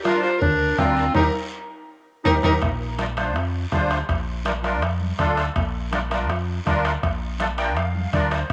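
This festive, danceable cumbia fragment, cut from a longer piece in straight 4/4, has a homespun cassette character bathed in moderate spring reverb. A soft-attack clarinet, up front yet roomy and distant, carries a brief classical-style solo melody with a tape-worn tone, while a single bowed violin adds an expressive second line with vibrato and portamento; both fall away by 2.6 seconds. A reedy, shimmering musette accordion supplies airy accompaniment throughout and adds fills before the second section and again near the close, as a dark, round fingered electric bass enters at 0.4 seconds and sits up front. The percussion mixes a soft-beatered, band-limited bombo, thick-skinned vintage congas in the background, ringing metal-shell cowbell and timbales, and a raspy guiro heard from a large room. A band accent and drum fill drive the Eb passage before the harmony returns to Bb as the second section begins.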